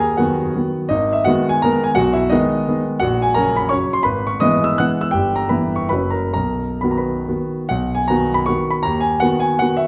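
Dotted rhythms lilt through this romantic classical dance in 3/4, a nostalgic, capricious fragment in B major for a warm, smooth, vintage-toned solo grand piano placed up front and spanning F#1 to F#6, its rubato pulse ranging from 122 to 184 BPM as the harmony drifts through G#m and a wistful Em/G before settling on B, all within a wet recital hall reverb.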